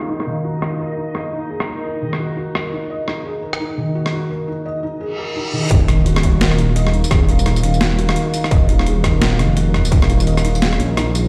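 Dark and tense, this half-time drum and bass excerpt at 171 BPM in E-flat minor opens with a moody, full-bodied ambient pad carrying 12-bit sampler grit and sidechain pumping, a soft felt-muted upright piano playing arpeggios through dub echo with audible action noise, and a reversed, dreamy swelling texture that ends at 4.3 s, while a gritty, overdriven boom bap kit with a high-tuned snare, hi-hat, rim click and tambourine swings underneath as filter sweeps build. A reverse cymbal leads into the drop at 5.7 s, where an electronic impact hits and a distorted, tape-flavoured electronic kick joins a deep, rumbling detuned saw bass sitting up front. The whole mix sounds played on a big system in a bare room, with large studio reverb and a low-pass filter dulling the top end.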